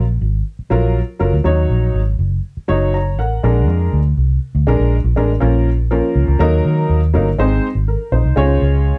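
A dark, round, foam-muted electric bass sits up front in this brief, passionate slice of uptempo 1960s-style soul in Eb dorian at 121 BPM, playing punchy lines from the start. An intimate, woody upright piano enters at 0.7 seconds, its worn, slightly detuned tone carrying long sustain and audible action noise as it moves through chords such as Gbmaj7, Ebm7 and Bb7. At 5.4 seconds the harmony shifts to a new section built on Bbm, Ebm, Ab and Db, keeping the urgent mood under light reverb.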